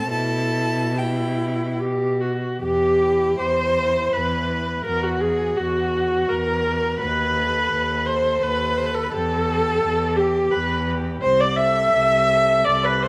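Classical slow romantic movement for string quartet in E minor, a yearning, solemn passage cut from a longer piece, moving in a rubato 3/4 at 68-87 BPM. A clear, focused violin sings the melody with vibrato above a dark, woody second violin set in the background, while an up-front viola, rich and smooth, supplies even accompaniment and the cello adds an expressive bass line with soft attacks, vibrato and portamento. Close, detailed microphones meet a moderate scoring-stage reverb, and the harmony moves from Em through F#7/E and B7/D# before turning to Am/C at 11.2 s.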